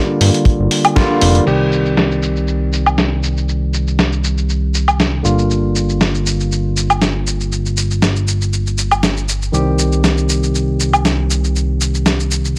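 Set in a digital ambience, this groovy, cosmic nu-disco excerpt in C minor moves at 119 BPM with a light 16th-note swing, as a bright, barky tine electric piano with overdrive, 12-bit sampler grit and tape echo plays over Gm7 and Cm changes, a fat, detuned analog bass mixing sawtooth, square and triangle tones with ring modulation, a filter sweep and sidechain pumping holds the low end, a gritty, compressed soul sampler-style kit re-recorded in a small room drives crash, hi-hat, shaker, snare and woodblock through low-pass filtering, and a dry, tight acoustic kick plays only from 0.5 to 1.1 seconds around a band accent at 1.0 seconds.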